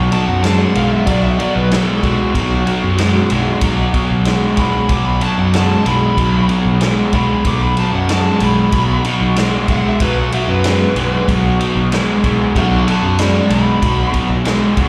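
A straight 4/4 groove drives this gritty, smoky blues rock and southern rock power-trio excerpt, with a raw, double-tracked garage guitar riff up front over a B5 chord, a fuzzy overdriven picked bass, and a vintage acoustic kit of tight kick, medium-tuned snare and dark ride cymbal, while a smooth overdriven lead guitar solos with slapback echo from 0.1 to 14.1 seconds, the gig captured through the venue's PA in light recital-hall reverb.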